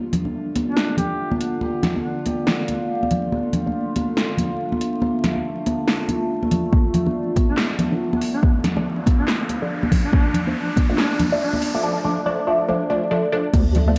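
A resonant, phaser-tinged drone of moving overtones opens this dark, meditative deep dubstep build-up in a swung half-time feel, soon joined by a punchy, overdriven drum kit with metallic hats and handclaps, bright high-tuned congas and a muted, nasal chord stab under a filter sweep, while a distant duduk with vibrato drifts through dub echo. A deep overdriven kick enters at 6.7 seconds before an electronic riser builds from 8.1 seconds, and a soft, wobbling square-wave bass arrives up front at 13.5 seconds, the whole mix soaked in dreamy plate reverb and vinyl crackle.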